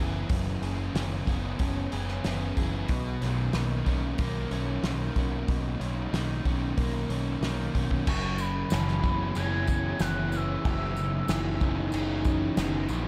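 Shoegaze and dream pop rock at 93 BPM in F# mixolydian, this dreamy, blissful section of a longer piece opens with riffs from an overdriven semi-hollow guitar washed in reverse reverb and a dark, thick fuzz guitar with subtle chorus. Beneath them sit a growling, up-front picked bass and a loose indie drum kit with a fat snare and tight kick, as the harmony moves from F#9sus4 to Bmaj9. At 8.1 seconds a hollow, woody clarinet-like synth lead with vibrato and analog delay carries a high melody, soon joined by a jingly tambourine and then a mellow, evolving wavetable pad of sustained chords, both sitting in the background of a small room.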